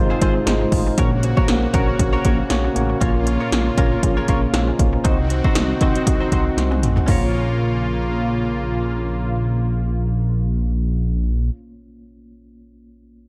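Driven by a 118 BPM pulse in 4/4 with a light 16th-note swing, this dark, moody 1980s-style pop excerpt in Bb minor sets punchy electronic pad drums with a gated snare and metallic hats up front alongside a glossy chorused synth bass, a mellow tine electric piano with a fill at 2.2 seconds, sustained chords from a brassy, detuned analog pad, and a twangy, compressed clean electric guitar riff treated with chorus and delay, all in a dramatic recital-hall ambience. The drums stop after a fill at 6.6 seconds, the other parts continue until about 11.6 seconds, and then the piano rings on alone to 13.3 seconds.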